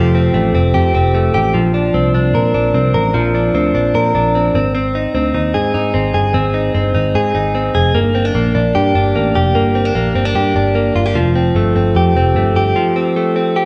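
Jangly indie pop with a nostalgic, breezy feel, built on a clean, direct-recorded electric guitar playing up-front, compressed arpeggios with spring reverb over a dark, round, punchy muted picked bass that drops out at 12.7 seconds for a brief break, all played live in one room with a wet stone reverb, in a passage cut from a longer piece.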